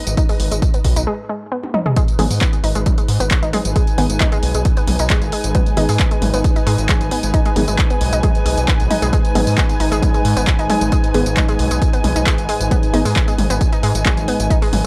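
A dry, gritty hardware recording of driving, relentless peak-time techno at 134 BPM in G# minor, cut from a longer piece, in which an up-front, layered punchy kick and a tape-warm analog drum machine of handclaps, hi-hat, tambourine and toms push a saturated sawtooth synth bass with oscillator sync and filter sweeps, a round, nasal, wave-folded analog pluck riff with chorus and tape echo, a deep, ring-modulated ambient pad drone and a lush, woody bowed string section, the parts other than the kick pumping to the sidechain, while after a short break and drum fill the drop lands at 2.0 seconds and a muted, detuned dub chord stab with phaser and tape echo enters in the background at 2.2 seconds.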